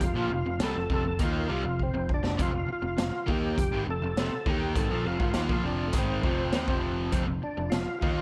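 A driving, confident classic rock excerpt at 101 BPM opens with everything at once: an up-front, thick, overdriven tonewheel organ carrying the melody through a slow rotary speaker and chorus vibrato, over a crunchy overdriven guitar riff joined by a hollow-bodied semi-hollow guitar riff sitting in the background. A bright, growly picked electric bass holds the low end on an F chord, while a raw garage drum kit of punchy kick, medium-tuned snare and hi-hat sits up front with a saturated, pumping small-room sound and rolled-off top. A drum fill breaks in at 1.8 seconds, and the whole passage carries light reverb and small-room ambience.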